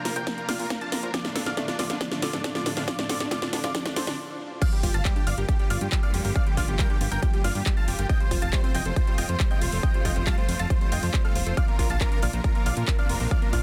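A thick, detuned supersaw lead, a boxy grand piano second line and clear bowed strings open this euphoric, driving uplifting trance excerpt at 138 BPM in G minor, joined by a round, chorused analog pluck whose arpeggios get a filter sweep through the build-up while the big-room drum kit plays a fill with a huge snare and metallic hats over a fat sawtooth bass and a punchy, up-front electronic kick, then after a brief stop at 4.2 seconds the drop lands at 4.6 seconds, with sidechain pumping on the lead, piano, strings, pluck, bass, hats and cymbals, tape echo trailing the lead, piano and pluck, and the whole dense, heavily limited master carrying little reverb.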